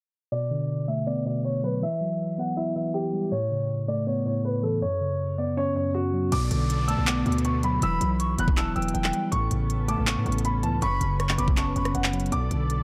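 A dark, low-passed production with light digital reverb carries this eerie, melancholic trap excerpt in B minor at 160 BPM in half-time, where an intimate baby grand piano with audible action noise sings the melody over a clean tine electric piano through a filter sweep. At 6.3 seconds a knocking trap kit, a punchy saturated 808 bass, veiled con sordino strings and a background downlifter arrive, and an airy jazz flute with tape echo adds a second line from 6.9 seconds.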